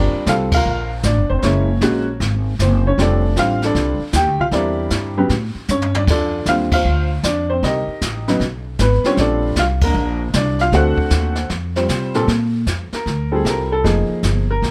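Swinging along at 155 BPM in 4/4 with a moderate swing on the eighth notes, this short cut from a longer jazz piano trio performance has a playful, buoyant mood. The upright piano carries the melody, boxy and up front, moving through rich harmony that opens on Gm9 and ends on Fm9. The upright bass, plucked, woody and thumpy with steel strings, sits close beside it. A brushed drum kit enters at 0.3 seconds, set back in a small, roomy space with dark cymbals, a boomy kick and a rolled-off top, and it adds a short fill around 5.7 seconds. The full band hits accents at 0.5, 6.7 and 9.8 seconds before the piano takes a solo from 12.3 seconds to the close, all under a light reverb.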